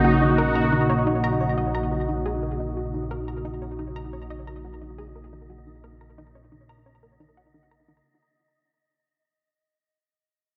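All at once, a bright, evolving, resonant pad sits up front holding a sustained Ebm7/Bb chord with chorus. Beneath it a fat, thick analog bass holds Bb1, while a round, detuned analog pluck with chorus and analog delay plays a riff. This mysterious, expansive ambient fragment moves at 88 BPM in 4/4. A very quiet, metallic vibraphone with soft mallets rings out arpeggios, and an airy, breathy, dark wind-like noise texture lingers in the background, all soaked in a dreamy plate reverb, with a filter sweep on the synth arpeggio sound and a fade-out across the full 8.1 seconds.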